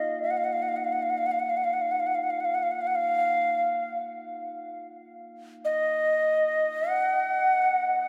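Unfolding in free time, this spacious, meditative world piece is carried by a hollow, airy cedar flute in the Native American style, whose soft-attacked, straight-toned melody sits up front with a trail of delay. A bronze singing bowl rings beneath it with metallic, slowly beating overtones, struck with a suede striker and heard only until 2.1 s. The flute continues alone to 8.1 s in a vast, echoing cathedral reverb, in this short passage cut from a longer work.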